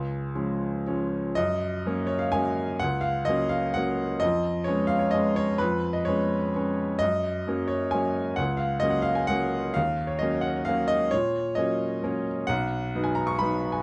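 A clear, intimate baby grand piano plays alone and up front from the opening C# chord, carrying a sparkling, playful classical waltz in F# major at a rubato 116-138 BPM in 3/4, its long sustain and audible action noise set in light reverb within a dark production, moving through chords such as C#7/E#, D#m7 and B in this short fragment cut from a longer piece.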